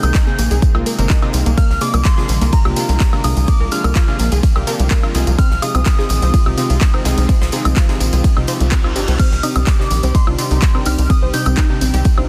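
A straight 4/4 pulse at 126 BPM drives this dreamy, emotional progressive house excerpt, where a punchy, up-front electronic kick and a tight, nasal sequencer bass with sidechain pumping anchor a house kit of warm hats, handclaps, ride, crash and woodblock, along with a jingly tambourine and a very quiet gated 80s kit of snare and hi-hat in an airy stone room. Above them, a lush supersaw pad and bright unison pluck stabs pump beneath a crystalline FM synth bell melody carrying chorus and tape echo, while a faint glassy wavetable pluck adds a second line and a mellow sequenced synth plays arpeggios in the background with chorus, phaser, 12-bit grit and echo. A reverse cymbal sounds from 8.6 to 9.2 seconds as the chords move from Abadd9 through Bb7 and Fm7 to Cmadd9.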